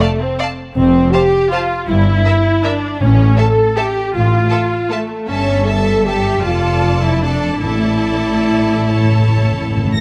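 Classical orchestral ballroom waltz in 3/4, bittersweet and dark, moving with rubato between 136 and 172 BPM, where a focused, vibrato-rich violin section carries the high melody over a second violin line and a bowed viola accompaniment, warm French horns sustain chords, double basses and lush cellos join on the bass at 0.8 seconds, and round, soft-mallet timpani sit in the background before a fill from 8.9 seconds, all in a moderate recital hall reverb as this brief cut from a longer piece passes from D minor toward a suspended A chord.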